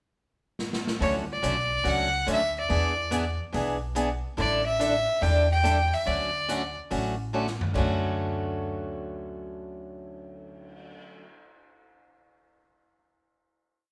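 A swung two-beat bounce drives this cheerful western swing piece: sticks keep time on the hi-hat of an airy big-band drum kit, whose fill at 0.6 seconds kicks things off, while a woody, thumpy pizzicato upright bass plays root and fifth with walk-ups under a bright, boxy acoustic guitar picking four to the bar. Up front, a single bowed fiddle, biting and intense with light vibrato, carries a down-home, motif-based melody over Dmaj7, E7 and A7sus4 until 6.8 seconds. After another drum fill, the band holds a final Dmaj7 chord in light reverb, sounding like a group playing live in one room.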